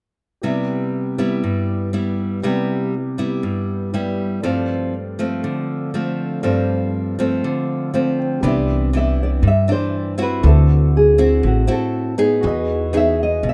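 A straight 4/4 bossa nova groove at 120 BPM in C major carries this romantic, sunny excerpt, where a thumb-plucked classical nylon-string guitar comps over Cmaj7 and G9sus4 beside an intimate concert grand piano in the background with audible action noise and long sustain, which plays a fill at 7.7 s before a growly pizzicato upright bass enters up front at 8.4 s and a fingerpicked nylon-string guitar melody joins at 9.0 s over Cmaj9, D9 and Emaj7, heard through light reverb and small-room ambience in a rough home-demo mix.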